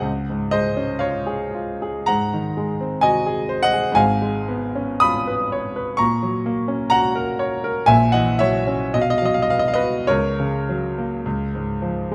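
Classical romantic nocturne excerpt for solo piano, serene and tender, drifting in rubato 4/4 at 49-66 BPM and settling into F# major from 4.0 s, with a clear, smooth, vintage grand piano of short sustain placed up front, spanning G#1 to D#6 over chords moving from Db through Ab9, C#7/G# and F#7/A# to a close on C#, captured by close, detailed microphones in a moderate recital hall reverb.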